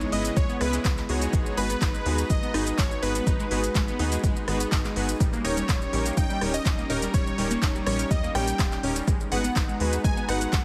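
A deep, up-front electronic kick drum enters at 0.4 s and anchors this expansive, dreamy progressive house excerpt in a straight 4/4 metre, set in a studio reverb alongside a layered deep house kit of handclaps, smooth hi-hats, rim clicks and shaker. Beneath it, a tight sequencer bass drives the low end with a punchy, saturated tone that stays mellow, its filter plucks and moving notch giving each decaying note a wave-folded edge. A bright, catchy unison lead carries the melody with vibrato and dub echo, while a lush, detuned unison pluck spins arpeggios through a phaser and its own dub echo. Soft supersaw stabs arrive at 0.1 s with a smooth, sustained body, and an airy, breathy pad with chorus holds chords in the background over a C#m7, G#m7 and D#7 progression. Sidechain pumping sets the melodic and harmonic layers breathing, and the whole mix carries a heavily compressed, radio-like sheen with light reverb.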